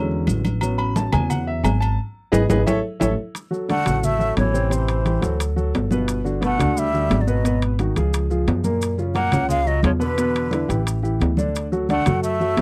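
A breathy concert flute with vibrato carries the melody from 3.7 s, its tongued, expressive line sitting over a lively, sophisticated Afro-Cuban jazz groove cut from a longer piece. The warm baby grand piano, natural and up front in the mix, opens alone, and the band joins with an accent at 2.0 s and a drum fill just before the second section begins at 3.3 s. A woody, growly pizzicato upright bass sits up front beside it, while a trombone with a metal mute adds a buzzy, brilliant second line. The percussion blends bright, thin-skinned congas set in the background, ringing agogo bells and timbales, and grainy, mellow maracas. The harmony moves through lush extended chords such as Dmaj9, Gmaj9 and F#maj7, and the whole has the dry, close feel of a 1970s-style studio with a touch of light reverb.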